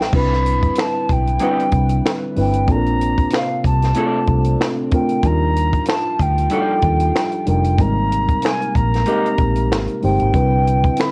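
Smooth and warm, this neo-soul R&B excerpt moves at 94 BPM with a swung sixteenth feel, carried by a pure, expressive silver concert flute with vibrato and a crisp attack over a reedy, mellow electric piano and a foam-muted, round, punchy fingered bass. A compact cocktail drum kit with dark cymbals, a high-tuned snare, a tight kick and finger snaps sits dry and up front. A shimmering, retro chorused pulse-width pad holds soft chords in the background, while a dark, slightly broken-up electric guitar adds a picked second line from 1.4 to 9.3 seconds, all over a Cmaj9, Bbmaj9, Ebmaj9, Abmaj9 progression with the hazy tint of a home cassette recording.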